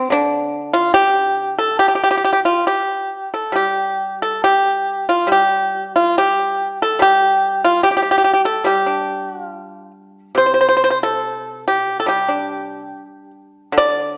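A fingerpicked solo pipa, percussive and up front with a warm, dry tone ranging from C3 to D5, carries this elegant, serene fragment of Chinese traditional music in the G shang mode at a rubato 71 BPM in 2/4, shifting to a new section at 10.4 seconds, all heard through a moderate recital-hall reverb and the worn, warbling pitch drift of old cassette tape.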